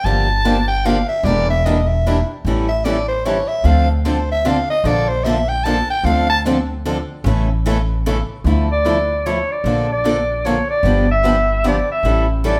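Swinging in 3/4 at 150 BPM, this fiery stretch of acoustic string swing in D harmonic minor rides on a thumpy, woody pizzicato upright bass and two picked acoustic guitars, a boxy swing-style guitar with audible finger squeak and a fresh-stringed steel-string parlour guitar, while a raspy, growling, close-miked soprano saxophone solos with vibrato until 6.4 seconds and a bright, roomy clarinet takes the melody at 8.7 seconds with scooped, vibrato-laden notes, the band heard playing live together in one large studio with moderate reverb.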